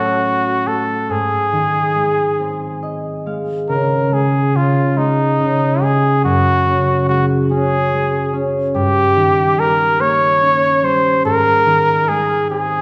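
A wet recital-hall reverb surrounds this brief excerpt from a longer piece, a gentle, tender children's lullaby in Db major that drifts in 6/8 at 47 BPM with a rubato feel. Up front, a clear solo flugelhorn carries the melody in a pop style, its punchy, scooped notes shaded with vibrato. Beside it, a warm acoustic concert harp plays ringing, thumb-plucked accompaniment, adding a fill from 2.4 to 3.7 seconds before the second section opens on a Dbsus2 chord.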